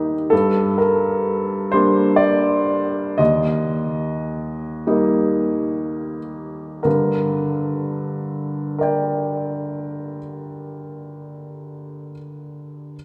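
Wistful and melancholic, this excerpt of neoclassical minimalist piano in G minor drifts in a rubato 6/8 at 29-43 BPM in dotted quarters: a lone upright piano spanning Eb2 to G5 sounds clear, woody and intimate up front, its audible action noise and long sustain held in a wet church reverb with an RT60 of 2.9 s, as the pulse slows through the first 6.8 seconds while the harmony moves from Gm to Eb and returns to Gm at 6.8 seconds.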